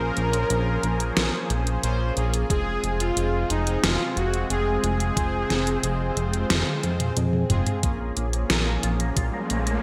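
Synthwave with a nostalgic, nocturnal mood, cut from a longer piece and moving at an unhurried, straight pulse under bright 1980s-style digital production and a moderate plate reverb. A smooth, airy supersaw carries the melody through a digital delay until 7.1 seconds, floating over a lush, detuned unison pad treated with chorus and phaser and pumping against the sidechain. A fat, sawtooth-edged bass sits up front, while brassy analog synth stabs with chorus, delay and vibrato hover in the background. A pop drum kit with a deep snare, hi-hat and toms enters almost at once, overdriven and bathed in gated reverb, joined from 2.5 seconds by a thumpy, sampler-style electronic kick, and a drum fill leads into the closing passage. There a clean, scooped electric guitar riff appears at 7.8 seconds under analog chorus and delay with a filter sweep, as a background riser builds toward the end.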